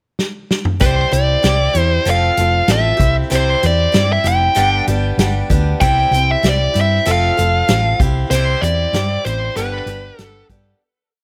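Studio reverb surrounds this nostalgic, open-road folk rock and heartland rock piece, where a natural country drum kit with a punchy kick and medium-tuned snare opens with a fill at 0.2 seconds before settling into a ballad groove, joined at 0.8 seconds by a dark, round hollow-body electric bass driving eighth notes, a bright, boxy picked acoustic guitar strumming swing eighths in open chord shapes, and an up-front distorted lead guitar with tape echo playing bluesy, motif-based song phrases, until a fade-out begins at 8.3 seconds.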